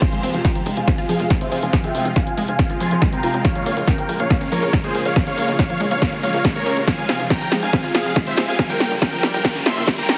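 A huge, detuned supersaw lead carries the melody from the first second of this soaring, bittersweet uplifting trance build-up, pumping against a punchy, up-front electronic kick and a dry, overdriven analog drum machine whose snare and hi-hats play a fill throughout. Beneath it, a lush phased pad holds sustained chords, a round, chorused analog pluck runs arpeggios with tape echo, a tight, ring-modulated sawtooth sequencer bass drives from 0.1 seconds, and a very quiet riser adds a faint electronic lift. Filter sweeps run across the supersaw and pluck over an Fm, Bbm7, Fm and Gm7b5 progression, all pressed into a heavily compressed, radio-like sound with light reverb.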